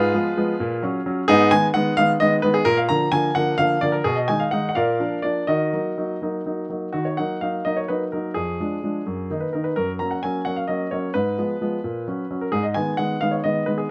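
A 6/8 pulse at 86 BPM in dotted quarters, pushed and pulled by rubato, drives this restless, dramatic classical-period piano sonatina in Eb minor, taken from a longer piece, where a solo baby grand with a clear, polished, up-front tone ranges from F2 to Bb5 under close, detailed microphones and light reverb, moving through diminished and minor harmonies before settling on Eb minor at 5.5 seconds and turning toward a second section at 6.9 seconds.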